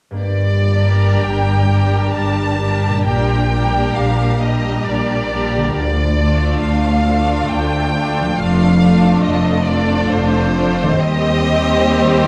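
A ringing concert harp begins the arpeggios at 0.1 s, joined at 0.2 s by a smooth, close violin section on the melody over focused cellos and double basses, then at 0.7 s by a lush, distant second violin line and violas sliding with portamento, in this solemn, melancholic slow romantic orchestral movement in G minor at 67 BPM in a rubato 3/4, moving from Gm through Dm to Cm/Eb under light reverb.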